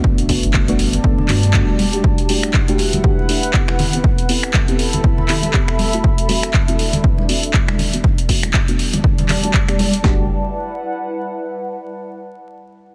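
Deep and warm, this swung 120 BPM deep house excerpt in E minor rides a punchy, up-front analog drum machine kick and snare, with lighter snaps, handclaps and hi-hat, and soft-clipped snare, while background congas and a round, dark triangle-and-sine bass, heard briefly up to 1.8 s and again around 10.0 s, pump under sidechain. Soft, detuned chord stabs, treated with chorus, phaser, delay and a moving notch filter sweep, cycle through Gmaj9, Em11, Am9 and D7, and a warbling, nostalgic lo-fi sawtooth pad with slow attack and long release outlasts the other parts until 12.0 s, all under light digital reverb, vinyl crackle and a dense, heavily limited master.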